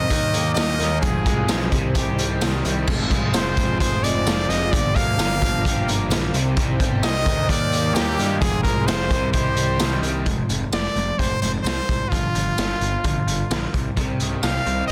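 Restless and bittersweet, this indie rock excerpt in C minor drives along at 130 BPM in a straight 4/4, with a brilliant, punchy trumpet carrying the melody up front, its vibrato-laden pop-style lead trailed by tape echo. A gritty, boomy garage drum kit pumps in a small room, while a growly fuzz bass, a twangy twelve-string electric guitar with ensemble chorus and an overdriven electric guitar riff behind them, joined by a very quiet jingly tambourine and a swirling, detuned phased analog pad. At 10.3 seconds the pad and overdriven guitar drop away as the chords move from Fm toward G7(no3), with the overdriven guitar returning at 14.0 seconds, all under a dense, heavily limited master with light reverb.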